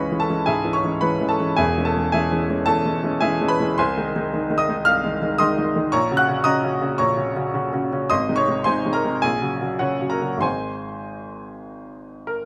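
Lyrical and hopeful, this brief passage of a romantic character piece for solo piano moves in C# minor with a flexible rubato at 94-115 BPM, its clear, slightly worn baby grand sitting present and up front in a light reverb as it spans from deep bass to high treble over shifting harmonies.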